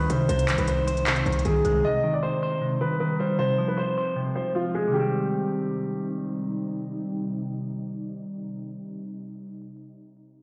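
A dark, mellow concert grand piano sits up front carrying the melody in this brief, hard-hitting trap fragment, its boxy tone and long sustain giving the opening a brooding, half-time weight before it drops out at 6.1 seconds. Beside it, a bright, twangy electric guitar run through an envelope filter plays clean, picked accompaniment and lasts until 9.1 seconds, while an ethereal, airy pad built from detuned sawtooth and triangle voices holds slow-attack chords in the background with ensemble chorus and its own reverb. The low end arrives in a short burst: a punchy, heavy 808-style bass with a sine body, a noise layer and a fast, decaying attack, joined by a tape-warm trap kit of handclaps and crisp hi-hats, both gone by 1.8 seconds. The harmony moves through Ab/C, Cm and Fm/C before returning to Cm as a second section begins at 4.9 seconds, with a filter sweep shaping the first part. The whole mix has a lo-fi, cavernous character, with vinyl crackle, a low-pass filter, light digital ambience and stone-room reverb, as if played on a big sound system in a bare room.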